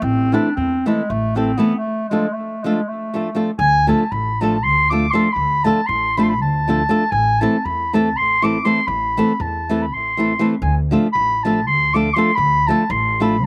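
Bittersweet and virtuosic, this short cut from a longer Balkan folk piece has the feel of a wedding band, moving briskly at 239 BPM counted in eighths in a straight 7/8 and set in D dorian sharp4. A mellow clarinet carries the melody up front in a classical solo style, its tone somehow distant and roomy at once as it ranges from G#3 to D6. Beside it, a fingerpicked flamenco guitar supplies acoustic accompaniment from 0.3 seconds, its warm sound touched by a slapback echo. Underneath, a woody, dark upright bass played pizzicato on steel strings holds the low end. The harmony moves between Am and Dm, with a break arriving at 1.8 seconds before a longer passage begins at 3.6 seconds. Recorded outdoors with little reverb, the sound is dry and immediate.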